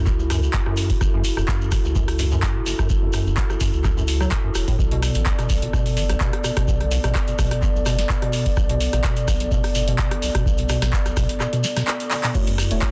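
A rubbery, resonant acid bass riff drives this raw, hypnotic acid house excerpt, its square-wave tone saturated through tube distortion with a subtle chorus and tape echo. Beneath it, a round, sine-like analog bass holds the low end with sidechain pumping. A dark, nasal pad of detuned sustained chords moves from F#m7 to Bm7, carrying chorus and its own sidechain pumping. The drums pair a deep, tape-tinged electronic kick with a booming analog drum machine of crisp snare, handclaps, rim clicks, metallic hi-hats and crash cymbal, with the snare, clap and hats set in a short room. A grainy shekere sits in the background over a light sixteenth-note swing. A drum fill arrives at 12.1 seconds, and at 12.3 seconds a soft, full-bodied chord stab with chorus and tape echo lands as the harmony returns to F#m7, all within a dry, dense and heavily limited mix.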